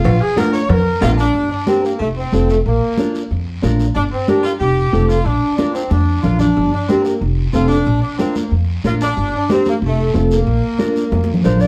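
A festive, danceable cumbia fragment opens with a warm, vibrato-laden saxophone section taking the melody as a solo up front, over a woody, thumpy pizzicato upright bass and bright, high-tuned congas struck with hard hands in the background. A ringing, vintage cowbell and timbales sound briefly near the start, a raspy guiro sits close and dry from 0.1 seconds, and a dark, fingerpicked nylon-string guitar joins the accompaniment at 0.4 seconds. A mellow, subtoned clarinet appears only at 11.5 seconds, just as the fragment cuts off, all within a moderate studio reverb heard from further back in the room.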